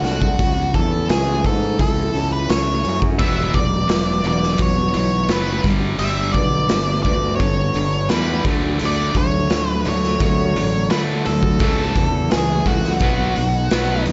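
A straight 4/4 pulse at 86 BPM drives this bittersweet, restless passage of quiet-loud alternative rock, cut from a longer piece and tuned to A4 = 439 Hz. Up front, a raw garage drum kit plays hi-hat, a punchy kick and a medium-tuned snare, saturated and gritty with a rolled-off top and a pumping stone-room sound. A growly fingered electric bass, overdriven and fuzzy, sits beneath a fingerpicked steel-string acoustic guitar whose arpeggios sit in the background with an auditorium glow. A dark octave-fuzz lead guitar carries the melody from the start, and at 3.2 seconds a tight, picked distorted guitar joins with a bright riff. The chords move from A/C# through Esus2, Gadd9 and D, return to A/C# and land on B, all in a dry mix with dull highs.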